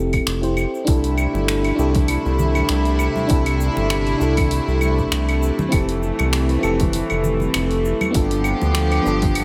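A mellow FM electric piano with chorus and delay opens this smooth, relaxed sunset chillout excerpt over a round, deep analog bass sitting up front, joined almost at once by a punchy electronic kick and a dark-hatted deep house kit of claves, finger snaps, hi-hat and shaker, before floating, bowed studio strings and very quiet, close, dry congas arrive at 0.9 seconds, all bathed in a dreamy cathedral reverb.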